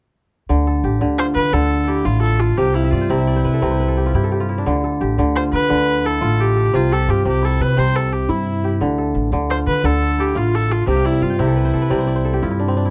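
A ringing, crisp kora sits up front in this West African traditional piece, its fingerpicked arpeggios spanning a broad register and breaking into fills at 2.6 and 10.9 seconds. The mood is reflective and flowing, moving at 116 BPM in dotted quarters within a straight 12/8 metre, in D dorian tuned to A4 = 438 Hz. A single bowed viola carries the melody from 1.2 seconds, its clear, airy tone carrying an earthy, boxy edge. Underneath, a pizzicato upright bass with steel strings gives a woody, growly foundation, also placed up front. The harmony alternates steadily between Dm and C, and the dark, warm production adds light reverb to this passage cut from a longer piece.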